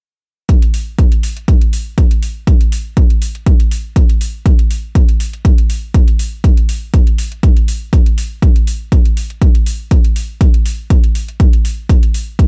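Warm and deep, this deep house excerpt moves at 121 BPM in 4/4 with a light 16th-note swing, built entirely from drums that run together from 0.5 to 12.5 seconds. A punchy, overdriven electronic kick sits up front and dominates the mix, while a metallic, layered electronic hi-hat, also overdriven, rides much lower beneath it. The sound is dry, with little reverb.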